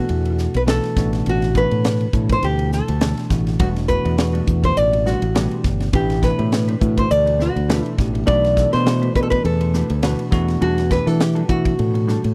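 Funky and slick, this electric jazz fusion piece moves at 103 BPM in a lightly swung 4/4 in E minor, with a small, fingerpicked nylon-string guitar carrying the melody up front over a bell-like tine electric piano tucked in the background. A bright, punchy fingered electric bass and a crisp, airy drum kit with a high-tuned snare and punchy kick sit close and forward, while a dark, compressed electric guitar slips in quiet stabs with lush chorus from 3.6 seconds. The dry, close 1970s-style studio sound keeps every detail intimate as the chords drift through lush extended harmonies such as Em9 and Am11.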